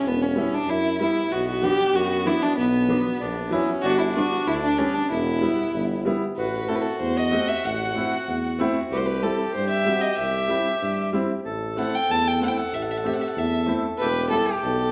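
Klezmer at 94 BPM in 2/4 with a straight, bittersweet yet festive feel, cut from a longer piece, where an up-front, dark, woody bowed violin sings the melody with vibrato and a sul tasto softness over a warm tuba bass with light vibrato and a smooth top, a clear, polished upright piano accompaniment entering at 0.4 s, and a reedy accordion second line joining at 1.3 s, the band playing live in one large studio room with generous reverb as the tune moves from E Dorian sharp 4 to A Dorian sharp 4 at 6.4 s.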